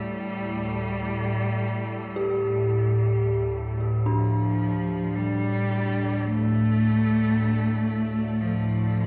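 Dark and desolate, this free-time dark ambient drone in D minor is cut from a longer piece, anchored by an up-front, warbling organ-like drone with ensemble chorus while a clear, focused solo cello carries a bowed melody with vibrato through dub echo. An eerie, inharmonic synth bell spins detuned arpeggios through chorus, phaser and dub echo, a barely audible analog pad holds deep, moody chords until 4.1 seconds as the harmony moves from Gm/D to Dm, and a very quiet, crystalline glass pad enters at 5.1 seconds. The echo-heavy mix sits in a wet echo chamber reverb.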